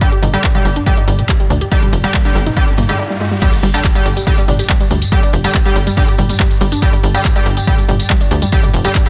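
Driving peak-time techno with a hypnotic pull, this excerpt from a longer piece rides a straight 4/4 pulse and a dense, heavily limited modern master with little reverb. A punchy, up-front electronic kick, re-recorded in a large room, anchors the groove. Around it, an analog drum machine adds crash cymbal, handclaps, hi-hat, tambourine and toms, all with sidechain pumping. A tight, nasal sequencer bass with tube saturation drives underneath. Above it, a warbly, dusty, lo-fi pluck with ring modulation and filter sweep carries the riff, while an edgy sync-sweep polysynth plays bright, sustained stabs; both carry chorus, sidechain pumping and digital delay. Beneath them a very quiet, swarming drone of detuned, granular sine tones holds a tense floor, and a faint riser enters at 2.2 seconds, leading into a brief break at 3.0 seconds before the drop lands with an impact at 3.4 seconds.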